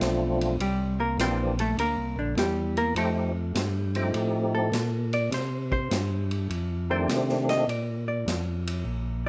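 A fat, percussive tonewheel organ carries the melody up front, turning through a slow rotary speaker with chorus vibrato and key click, while a second, lightly overdriven organ holds down the bass in this swinging, soulful soul-jazz trio excerpt at 102 BPM in F mixolydian. A dark, clean hollow-body jazz guitar enters at 0.6 s and solos over changes moving from Dm7 through C7, F7 and F13 before landing on Bb. A vintage acoustic drum kit with a punchy kick and dark cymbals sits behind them in moderate studio reverb, dropping out at 8.8 s.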